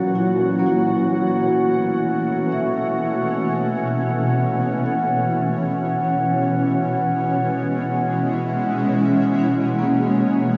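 In free time, this luminous, peaceful ambient fragment cut from a longer piece floats a shimmering, wave-folded pad up front through sustained chords from F#7 to A69 to C#m7 at 5.6 seconds, while a metallic, ringing vibraphone with medium mallets and its motor off traces arpeggios in the background through diffuse delay, and a glassy, beating glass harmonica holds a pure F#5, all bathed in a huge reverb whose vast, echoing space rolls off everything above 7.5 kHz.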